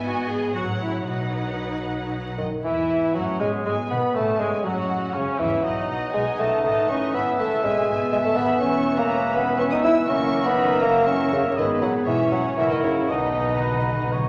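An up-front, mellow bassoon stands out in this lively, cheerful excerpt from a quick classical-period movement for symphony orchestra in E major at 120 BPM in 3/4, played with a rubato feel. Bowed string sections open the passage together: violins carry the smooth, close melody, a second violin section adds a focused higher line, and a distant viola section fills the accompaniment over a bass of rich double basses and a lush, very quiet cello section, all with vibrato. The bassoon joins at 2.4 seconds, and at 2.6 seconds an airy, hollow flute, a clarinet set in the background and a vintage-toned cor anglais add further lines. The harmony moves through chords such as E, G#m, F#m, B7/A, C#m7/E and F#7 before settling on B. A very quiet, close and dry timpani fill with calf heads and medium mallets enters at 13.1 seconds. A wet recital hall reverb surrounds the orchestra, and vinyl crackle gives the sound an aged surface.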